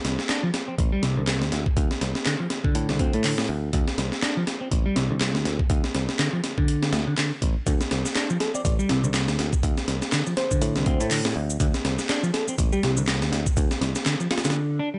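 A swung 16th-note groove at 122 BPM drives this funky, swaggering breakbeat cut in D minor, where a compressed, sampler-style drum kit with a thumpy kick and high-tuned snare sits up front beside a growly picked electric bass, layered electronic handclaps and shaker add to the pulse, a clean semi-hollow guitar riff rings through spring reverb and analog delay, and from 8.4 seconds a sparkling, bell-like FM electric piano melody arrives with chorus, delay and a telephone-filtered tone, the whole mix dry and gritty until a brief break at 14.6 seconds.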